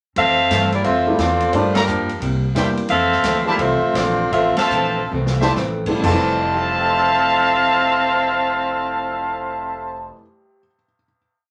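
Swung eighths in 4/4 drive this joyful, energetic big band swing piece, where a mellow saxophone section with vintage vibrato leads with hook phrases in four-part block voicing, clear trumpets add soft-attack syncopated stabs in drop2 voicings, a woody, thumpy upright bass walks beneath rootless piano comping and a dark, clean hollow-body archtop strumming in the background, and the drum kit's ride cymbal and backbeat, band accents and a brief fill lead through a slowdown into the final chord at 6.0 s, where the drums drop out at 6.2 s, all within a wet studio ambience.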